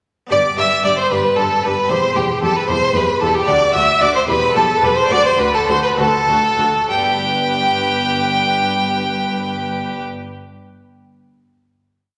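Baroque-style classical concerto movement in G major and 6/8, festive and lively at 63-76 BPM in dotted quarters, with a brief ritornello that slows from 2.7 seconds into a final chord held from 6.9 seconds. An up-front, clear solo violin carries the tune with smooth vibrato, doubled at the octave by a rich violin section on the second line and topped by an intense upper violin section in the background. A distant viola section adds repeated notes and sustained chords, a dark, soft-attacked cello section and an expressive double bass section anchor the bass line, and a bright harpsichord sounds rolled chords behind them, all in a reverberant scoring-stage ambience.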